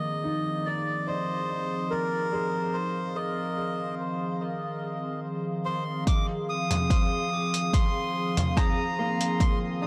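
A huge ambient reverb hangs over this short, hazy ambient dub fragment, lending a deep, cavernous sense of space. At 72 BPM in a straight 4/4 and centered on F dorian, it opens on an Fm7 chord, with a warbling, nostalgic tape-like pad holding sustained chords up front, its detuned, dark tone shaped by chorus, its own reverb and a filter sweep. A reedy, breathy melodica carries the melody just as prominently, its nasal voice trailed by tape echo. Farther back, a felt-muted upright piano plays soft, boxy arpeggios with audible action noise, filtered and echoing, and it too moves through a filter sweep during the first 6.1 seconds. At 6.1 seconds the drums arrive: an overdriven, deep electronic kick sits up front, joined by a muffled, pitched-down lo-fi sampler-style kit of hi-hat, rim click and toms that sounds as if re-recorded in a small room.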